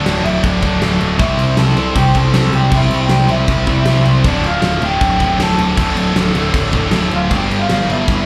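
A straight 4/4 pulse at 157 BPM drives this aggressive, raw punk rock clip in D minor, cut from a longer piece and moving through D5, C, Dm and G5 across its 8.3 seconds. A big acoustic rock kit with a punchy kick, fat snare and crash in a bright stone room sits under a growly, fuzz-soaked picked bass up front, while a double-tracked cranked stack guitar in the background and a double-tracked high-gain distorted guitar churn out the riff with slapback echo. On top, a lo-fi lead guitar through a small cranked amp carries the overdriven melody with its own slapback, the whole band heard like a live club gig through the venue's PA with small room ambience and club reverb.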